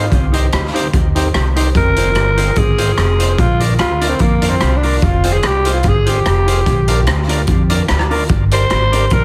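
A driving ska rhythm at 147 BPM in 4/4 pushes this energetic passage, with a light swing on the eighth notes. A raw garage drum kit of hi-hat, kick drum and rim click sits up front, its boomy kick and saturated, rolled-off sound carrying a small-room grit. A woody pizzicato upright bass anchors the low end in F dorian, while a dark, clean, fingered electric guitar plays mellow accompaniment in the background. An overdriven tonewheel organ, also set back, adds thick stabs through a slow rotary speaker and tape echo. Over the top, a growling alto saxophone takes the solo for the full 9.2 seconds, breathy and raspy with vibrato and a vintage tone, trailed by its own tape echo. The chords move through Cm, Fm, Bb and Gm, all bathed in studio reverb and a heavily compressed radio sound, in a passage cut from a longer piece.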